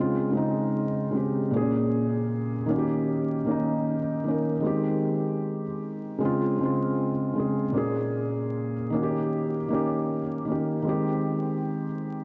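Melancholic and hazy, this short hip hop passage features a felt-muted upright piano playing alone for its full 12.2 seconds. It moves through Dbmaj7, Bbm7, Eb7 and Abmaj7/Eb twice over a swung sixteenth-note feel. The piano sits up front, dark and intimate, with thick felt and audible action noise, and it is colored by cassette tape, a low-pass filter and a diffuse ambient delay. The dreamy mix is soaked in a lush hall reverb and dusted with vinyl crackle.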